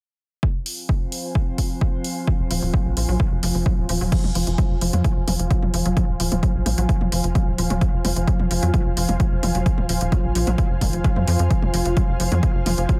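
An overdriven, punchy analog kick opens this relentless, industrial slice of driving peak-time techno at 130 BPM in F phrygian, quickly joined by a dry, distorted drum machine of hi-hats, toms and crash, whose hits pump under sidechain, along with an ethereal, airy pad steeped in ensemble chorus and reverb. An eerie, warbling metallic FM drone hovers low in the mix with chorus and reverb until 4.2 s. From 2.3 s a juicy, squelchy detuned blip pluck enters, overdriven and trailed by dub echo, and from 2.4 s a tight sawtooth sequencer bass drives the low end, both pumping against the dry, up-front kick.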